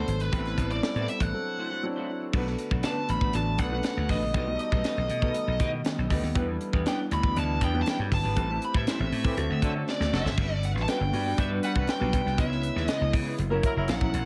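A glossy, breezy slice of polished 1980s jazz-funk pop at 119 BPM in G major, set in a small room with light reverb, where a punchy, bright slap bass and a tight funk kit with a high-tuned snare and gated reverb sit up front. A dark, high-gain lead guitar with distortion and tape echo carries the melody over a deep-toned grand piano with analog chorus and a clean semi-hollow guitar riff tucked in the background. A flute-like, warbling pad enters at 2.7 seconds, a band accent and drum fill lead into the closing stretch, and a clear vintage horn section with light vibrato adds a second line from 9.2 seconds over chords moving from Am9 through Gmaj7 to F#7.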